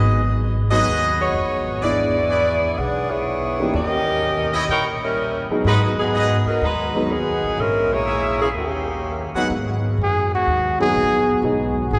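Swung eighths in 4/4 drive this brassy big band swing fragment, where a woody pizzicato upright bass and an open-sounding grand piano with deep low end support a tight saxophone section melody with light vibrato from 1.2 s, bright trumpet section stabs punctuate until 9.5 s, and then a soft-attack trombone section holds background chords as a clear, forceful solo trumpet takes the melody at 10.0 s, the whole ensemble set inside a long, wet cathedral reverb.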